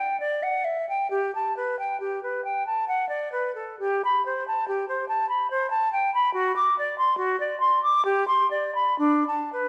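Flowing and radiant, this short excerpt from a longer baroque-style fantasia features a lone concert flute in G major, moving at around 69 BPM in 3/4 with uneven beats and a free, rubato feel. The flute plays throughout its 9.7 seconds, ranging from D4 up to D6. Its tone is airy and warm with vibrato and a crisp attack, giving the expressive line both softness and clarity. The instrument sits up front yet carries a slightly distant quality, framed by a moderate scoring-stage reverb that lends the solo a spacious glow. Tuned to A4 = 442 Hz, the playing has a radiant, classical poise suited to its unaccompanied, improvisatory character.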